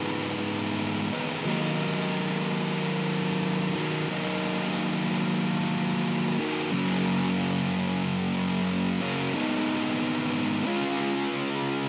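In a straight 4/4 feel, this soaring, cinematic rock passage, cut from a longer piece, features a single thick, double-tracked fuzz electric guitar soloing up front from 0.0 to 11.9 seconds. The picked, distorted guitar carries tape echo, and it moves over chords of G#m, D#m, F# and C#. The dreamy mix is soaked in a moderate plate reverb with a 2.4-second tail.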